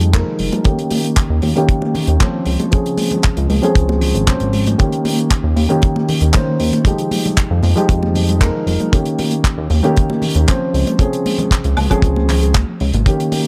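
A dark, mellow baby grand piano with tape echo and a filter sweep carries this sunny, feel-good nu-disco cut at 116 BPM over Fm9, Eb7 and Dbmaj7 chords, alongside a glossy, nasal chorused synth bass up front, very quiet soft round pluck arpeggios, a polished, damped 70s drum kit with handclaps, hi-hat and woodblock, a tight, up-front kick from 0.1 seconds, and bright, high-tuned congas in the background, all captured in a dry, gritty small room.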